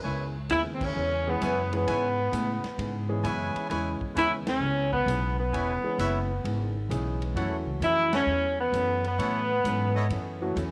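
Swinging and brassy, this short big band swing excerpt in C# minor moves at 131 BPM, with the up-front saxophone section carrying a soft-attacked, lightly vibratoed melody touched by tape echo, clear trumpet stabs, a woody pizzicato upright bass, a deep-voiced concert grand piano entering at 1.3 seconds, a clean hollow-body archtop guitar in the background and a dark, boomy drum kit, with band accents landing at 0.7, 4.4 and 8.0 seconds over C#m7 shifting to F#m7 in a light studio reverb.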